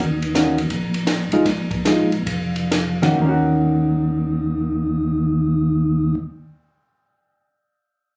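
Captured on a phone in the room, this short, compressed cut from a longer soul jazz organ trio piece carries the lightly reverberant ambience of a club. The mood is bluesy and soulful, with a swung feel that slows over the first 3.2 seconds. A full, lightly overdriven tonewheel organ sits up front and carries the bass line, its vibrato and key click heard through a stationary speaker. A compact cocktail kit with a punchy kick, high-tuned snare, dry hi-hat and dark ride cymbal plays only until 3.1 seconds. An electric hollow-body jazz guitar, clean and fingered, also up front, comps through the Ebm7 and Bb7sus4 changes from 0.3 seconds, and the organ and guitar carry on together once the harmony returns to Ebm7.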